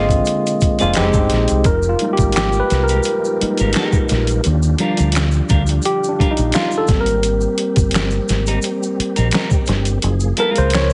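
Smooth and late-night, this short cut from a longer R&B and neo-soul piece sits at 86 BPM in F dorian, with a lightly swung sixteenth-note feel. A breathy, whispered flugelhorn with tape echo sounds a dark, intimate phrase in the background only until 1.0 seconds. A worn, slightly out-of-tune tine electric piano heard through its built-in speakers then takes a solo from 1.7 seconds to the end, over chords moving from Fm11 through Ebmaj9 and Abmaj9 to Gbmaj9#11. A clean, picked electric guitar with spring reverb plays a second line, a tonewheel organ holds sustained chords in the background with slow rotary speaker, chorus vibrato and key click, and a deep dub fingered bass sits up front, round and punchy. The gritty, pitched-down boom bap sampler-style kit brings a thumpy kick, medium-tuned snare, hi-hat and finger snaps, joined in the background by a band-limited egg shaker and group handclaps. 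The whole mix carries light reverb and a heavily compressed radio sound with a muffled top end.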